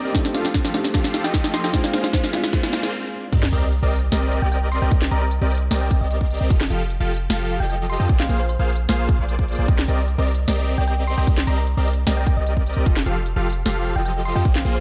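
This bittersweet, lush future bass excerpt in C minor opens on a build-up: a felt-muted upright piano sounds soft and intimate, with audible action noise. A tine-like, warbling thumb-piano-style synth pluck carries the melody in the background. Huge detuned supersaw chords play the riff under a filter sweep, while a background riser climbs and the trap kit and hard-clipped electronic kick play a drum fill. After a brief break at 2.9 seconds, the drop lands at 3.3 seconds with an impact and sub drop. The piano stops there and a deep, boomy 808-style bass enters up front. From then on the half-time feel at 151 BPM is driven by the kick, a sharp snare, crisp hats and crash cymbal. The pluck, supersaws and bass all pump with sidechain, and the melody and chords cycle through F7, Bb7 and Cm9 under light reverb.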